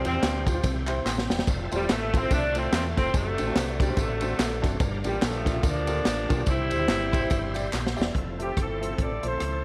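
A mellow horn section carries the melody up front, playing with a soft attack, light vibrato and a vintage, jazz-styled ensemble sound in this hopeful, soulful stretch of uptempo gospel cut from a longer piece. A swinging big-band drum kit drives the groove just as prominently, with a punchy kick, a high-tuned snare, rim clicks, hi-hat and dark ride cymbals, and it drops in short fills around 1.1 and 7.7 seconds. Underneath, a deep, round fingered electric bass enters at 0.1 seconds with a direct, amped tone, while an intimate concert grand piano adds accompaniment with audible action noise and a full low register. A bright, shouting tonewheel organ holds sustained chords in the background through a fast rotary speaker with light overdrive and chorus vibrato. Compressed, saturated tambourine and group handclaps sit farther back until 8.1 seconds. The harmony moves from Csus4 to C, then through Fmaj7, D7/F#, Gm7 and C before landing on Fmaj7 as a new section opens at 8.2 seconds, all set in a small room with light reverb.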